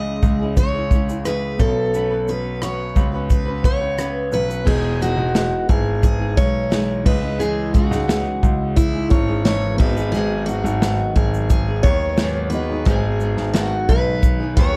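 This acoustic pop piece, cut from a longer work, moves at 88 BPM in a straight 4/4 in E major with a carefree, sunny mood. A picked steel-string acoustic guitar carries the melody up front, its jumbo body full with fresh strings and audible finger squeak, set in plate reverb and delay. Beneath it, a double-tracked flamenco guitar is fingerpicked with plate reverb, while a very quiet, reedy electric piano adds a mellow, clean tremolo through its built-in speakers. The bass comes from a clear concert grand piano, deep and polished with short sustain. A natural country drum kit enters at 0.2 s with a punchy kick, medium-tuned snare, rim click, shaker and crash cymbal in an airy studio room. The harmony moves from C#m and Bsus2 into Emaj7, C#madd9 and G#m7 from 4.7 s, inside a dark, warm production with light reverb.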